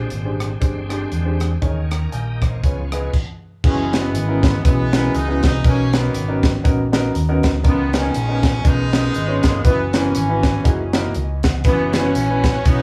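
Uptempo gospel at 120 BPM with a swung 4/4 feel, jubilant and uplifting: a natural-sounding baby grand piano accompanies a dark, round fingered electric bass and a crisp fusion drum kit with a punchy kick and high-tuned snare, while a bright, shouting tonewheel organ with slow rotary speaker and key click holds sustained chords until a brief stop at 3.1 seconds, after which a tight, distant horn section with light vibrato, plate reverb and tape echo carries the melody from 3.6 seconds, the piano adds a fill at 6.9 seconds, and the organ returns near the end of this excerpt.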